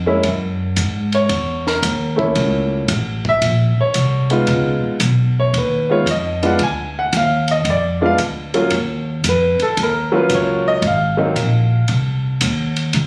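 Captured on a phone in a club, this short cut from a longer jazz piano trio piece has a light, roomy reverb around a relaxed, swinging groove at 113 BPM in 4/4. A clear, natural upright piano carries the melody and takes a solo, touched with plate reverb and ringing out until 11.9 seconds over chords such as Gb9, Db9 and Ebm7. Beneath it sit an up-front, woody pizzicato upright bass with steel strings and a dry compact cocktail kit of dark ride and hi-hat cymbals, a high-tuned snare and a punchy kick.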